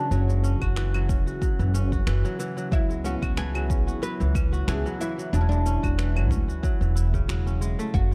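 A dark, warm production sits in a small room, giving this short excerpt of organic downtempo a meditative, mystical air. At 92 BPM in 4/4 with a light swing on the sixteenths, and tuned to A4 = 438 Hz, it moves through F#5, C#m7 and E7(no3). A plectrum-plucked, fretless oud with woody double strings carries the melody over ringing, crisp fingerpicked kora arpeggios, both touched with digital delay. Behind them a mellow sawtooth-and-triangle analog pad holds slow-attack chords with chorus, 12-bit sampler grit and sidechain pumping. Up front, a pizzicato upright bass on steel strings enters at 0.1 seconds and also pumps with the sidechain, while overdriven electronic shaker, claves and finger snaps arrive at the same moment. A deep, layered, overdriven electronic kick joins at 0.6 seconds to anchor the groove.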